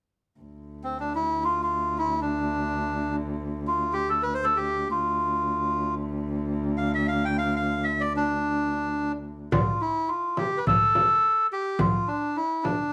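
Turkish makam ensemble music in free time and D makam huseyni, melancholic and soulful, in which a veiled, con sordino cello holds a low bowed D drone with light vibrato and portamento until 9.6 s, beneath a reedy, breathy, nasal melodica melody with plate reverb ranging from C4 to G5, before a deep, vintage frame drum played with soft hands joins at 9.5 s, all set a little back in a reverberant studio room in this excerpt from a longer piece.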